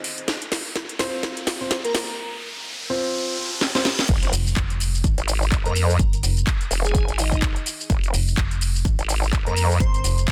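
A nasal, resonant vowel-sweep wobble bass dominates this aggressive, swaggering bass house cut. It arrives at the drop at 4.1 seconds alongside a punchy electronic kick, with a metallic FM bass entering just after, and both basses are saturated by overdrive and pump under sidechain compression. Before that, a build-up of house drum kit fills with cracking snare, handclaps, shaker and metallic hi-hats rises under a riser and reverse cymbal, while dark, mellow grand piano stabs echo through digital delay and a brief airy, dreamy lead flickers in. That soft, chorused lead returns at 5.7 seconds over the drop and its crashing impact, all set in light digital ambience and a dense, heavily limited master.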